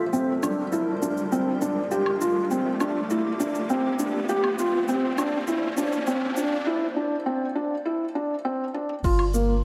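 Drenched in a lush hall reverb, this melancholic, moving slice of piano and strings electronica in G dorian at 101 BPM centres on a felt-muted upright piano, soft and intimate with audible action noise, playing an up-front riff through tape echo over a blurred, granular cloud pad that pumps beneath it. A round analog bass sits very quiet and deep underneath, while an organic electronic drum kit, tape-warm and re-recorded in a small room, adds crash cymbal, shaker, toms and woodblock through the build-up. A riser runs until 6.7 s over the move from Gm7 through Fadd9 to Bbadd9, giving way to a break on Cadd9, and a drum fill at 8.7 s leads into a single deep, layered electronic kick at 9.0 s as the chords return to Gm7.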